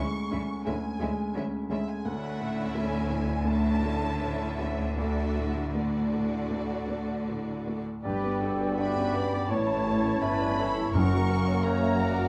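Uplifting and hopeful, this cinematic film-score passage, cut from a longer piece, moves with an uneven, rubato pulse as a lush violin section carries the melody over a second violin line, a felt-muted upright piano with audible action noise, background violas with portamento, and bowed cellos and double basses. At 8.0 s a bright, airy wooden flute, clarinet and oboe add second lines while a French horn section holds sustained chords in the background, and hard-mallet timpani enter at 10.9 s. The ensemble sits in a wet stone room reverb.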